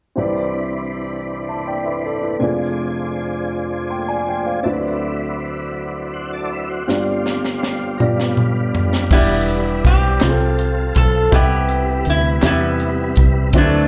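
Hopeful and jubilant, this slow 6/8 gospel passage, heard as a live club gig through the venue's PA, opens with a dark, woody upright piano carrying slapback echo over smooth tonewheel organ chords turning on a slow rotary speaker, before a polished fusion drum kit with bright cymbals enters on a fill at 6.9 seconds and a metallic, nasal resonator slide guitar, also with slapback echo, takes the melody at 9.1 seconds over a round, punchy dub bass, with very quiet group handclaps arriving briefly at 10.2 seconds.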